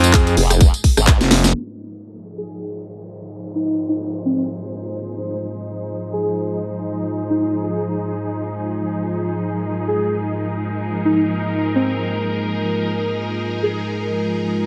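A swaggering, aggressive bass house drop opens the cut, with a thick, growling FM bass, a tight electronic kick, a sawtooth wobble bass with a formant filter, and a garage kit of cracking snare, handclaps, rim click, hi-hat and tambourine, all up front with the two basses pumping, before a short drum fill. From 1.5 seconds the beat and basses fall away, leaving a lush, close bowed string section and a deep, moody ambient pad under a slow filter sweep, while an airy, dreamy lead with chorus and delay floats through and a faint electronic downlifter sinks in the background. The pad is dark and softly reverberant, and the whole cut sits in a moderate digital room.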